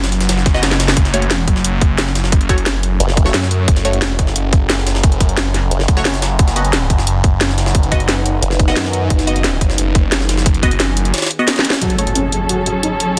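Futuristic and mechanical, this dark technical drum and bass piece opens with an overdriven, tight electronic kick and a cracking, bright-hatted drum and bass kit up front, a gritty, pitched-up jungle sampler-style kit tucked behind, and a swirling, thick phased saw bass, while a formant-sweep wobble bass cuts in for brief wobbling bursts. A moody ambient pad fades in underneath with chorus and reverb, and deep, filtered dub chord stabs sit in the background through phaser and delay. At 11.8 seconds an electronic impact lands as a lush symphonic string section and a soft, felt-muted upright piano playing arpeggios through a filter sweep join the pad, stabs and drum and bass kit, both pumping against the sidechain within a dense, heavily limited master.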